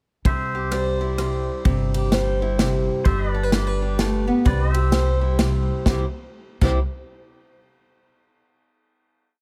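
Nostalgic and heartfelt, this brief honky-tonk and classic country waltz in C major moves at 128 BPM in a swung 3/4 over C, G and back to C. Up-front parts carry it: a woody, thumpy pizzicato upright bass on root and fifth, a punchy natural drum kit with crash, ride, rim click and a medium-tuned snare, and a boxy, fresh-stringed archtop guitar picked with an alternating thumb. A quieter, bright and clean pedal steel adds sustained chords with volume swells and glides until the final chord arrives at 5.9 s, all in a dry, polished studio room.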